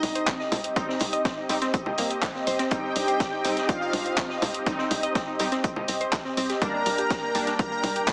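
Dramatic and hypnotic, this melodic techno excerpt in C minor moves at 123 BPM in a straight 4/4. A smooth, expressive portamento lead with vibrato carries the melody over a detuned soft supersaw second line, a lush, nasal unison pad holding Cm before shifting to Gm/C at 6.6 s, warbling lo-fi pluck arpeggios, brassy synth stabs and a tight sequencer bass on C2, all pumping against the sidechain, with a dub echo trailing the lead and tape echoes on the supersaw, pluck and stabs. A punchy analog kick enters at 0.3 s up front beside a layered deep house kit of congas, handclaps and hi-hat, while a very quiet vintage kit adds a high-tuned snare, all set in a concert hall reverb and squeezed into a heavily compressed, small-speaker radio sound.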